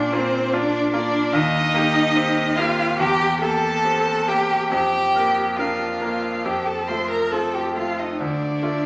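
Moving in an unhurried four with a flexible, rubato pulse, this slow romantic movement for piano trio unfolds in a lyrical, serene mood over a short span cut from a longer piece. The violin carries the melody with a smooth, even bowed tone and vibrato, heard close and warm. Beneath it the cello sings a second line, its soft attacks, expressive portamento and vibrato placed up front. The grand piano supplies the accompaniment from deep bass to the middle register, its brilliant, polished sound intimate and present, with long sustain and a touch of audible action noise. The harmony drifts through Bb, Eb6, C7/E, Bb/F and F before reaching Dm at 8.2 seconds, all of it set in a generous recital hall reverb.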